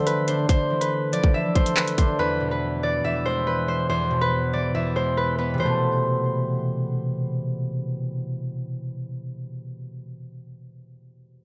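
Drill hip hop in a half-time feel, menacing and cold, this short excerpt opens with a buzzy, growling 808-style bass note and a hard-clipped electronic drum kit of metallic hats, handclaps and kick up front until 2.1 seconds, while a fingerpicked Celtic harp melody with digital delay rings out over bright concert harp accompaniment in light studio reverb, moving from Dmadd9 through E to Amadd9.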